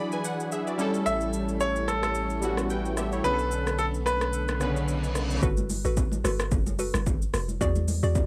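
A brilliant grand piano carries the melody from 1.1 seconds in this late-night, hypnotic amapiano fragment, its polished, short-sustained notes trailed by analog delay over round, detuned analog keys, a swirling, vintage string machine pumping softly in the background, a punchy deep house kit with smooth hats, shaker and rim click, and a full sub bass doubled at the octave. The kick drops out and a reverse cymbal leads into the drop at 5.4 seconds, where a dark, percussive log drum bass takes over the low end beneath hollow, bouncy square-wave stabs and ringing, hard-hit congas. The whole piece has the homespun character of a cassette home recording, with a light reverb.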